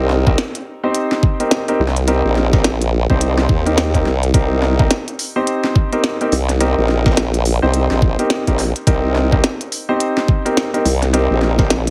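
Heavily compressed and radio-like with a light reverb, this swaggering, gritty glitch hop excerpt rides a swung sixteenth-note feel over a single Cm7 chord, where a sawtooth-and-sine formant-sweep wobble bass, thickened with chorus and tube saturation, sits up front beside warm grand piano stabs that pump against the sidechain and trail tape echo, while a glitchy drum kit of tiny snare and clicky hi-hats, re-recorded in a large room, joins at 0.1 seconds and a layered, overdriven electronic kick knocks in from 0.3 seconds.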